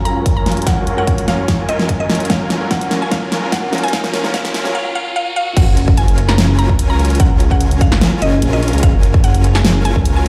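Lush and euphoric, this half-time future bass excerpt at 147 BPM in F# major opens on an F#maj7 build-up, where a brilliant grand piano sits in the background with sidechain pumping and delay, a breathy, very quiet pad holds sustained chords, and huge detuned supersaw chords carry the riff through a filter sweep. A woody, round mallet-like synth pluck with chorus and digital delay plays the melody, while a big-room dance drum kit with a huge snare and a punchy electronic kick drive a drum fill and a faint riser enters at 1.9 seconds. At the drop at 5.6 seconds the piano stops and a thick, saturated detuned saw bass arrives up front with chorus and sidechain pumping, all set in a large studio reverb as if played on a big sound system in a bare room.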